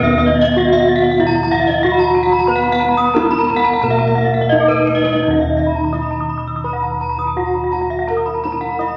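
A bright, up-front bronze metallophone, struck with a horn mallet, rings out its arpeggios high over this brilliant, hypnotic Balinese gamelan passage, cut from a longer piece in Eb pelog at 84-99 BPM in a straight 4/4. A second metallophone, also horn-malleted, plays its own arpeggios just above it with an airy shimmer. Beneath them, another metallophone carries the melody, played with a wooden mallet and heard close-miked, dry and full. Like the others, it is built with paired tuning, so its notes glint with shimmering beats. Round, beating bossed gongs anchor the bass. A mellow, softly padded metallophone adds background accompaniment from a boxy small room until 5.2 seconds, when the music moves into a new section. The tight, distant kendang, struck with hard hands and heard in the background, plays a drum fill from 4.3 seconds into that change, and a wet large studio reverb surrounds the ensemble.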